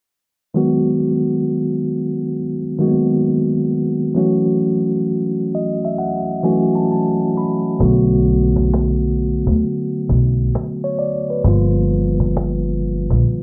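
A bell-like, bright tine electric piano opens this reflective, melancholic lo-fi hip hop excerpt with swung chords through cassette tape coloring and a filter sweep, adding a fill at 5.1 seconds before a woody, growly pizzicato upright bass and a snappy cajon carrying sampler grit enter together at 7.8 seconds, all set in a moderate studio reverb.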